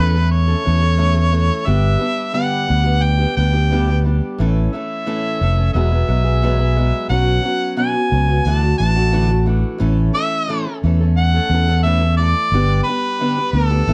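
A dark production with light reverb frames this hopeful, jangly folk rock and heartland rock excerpt in A major at 88 BPM, where an up-front vintage harmonica carries the melody with vibrato and scooped notes over a boxy, picked acoustic archtop guitar with audible finger squeak and a round, punchy fingered electric bass that sits loudest in the mix.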